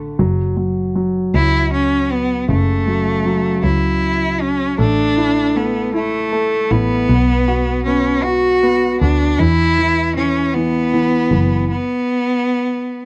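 A slow, straight six-eight sway gives this melancholic pop ballad its aching lilt. A woody, natural upright piano lays down the accompaniment in the middle register, while a close, bowed double bass anchors the low end with expressive vibrato and portamento. At 1.4 seconds a single bowed cello enters up front with the melody, its tone rich and focused, shaded by vibrato. The harmony moves from F#m7 through Asus4 and Bm to E5. At 11.7 seconds the piano and bass stop, leaving the cello alone until the fragment breaks off at 13.1 seconds. The sound is dry and intimate, like a close 1970s-style studio recording with a touch of studio reverb.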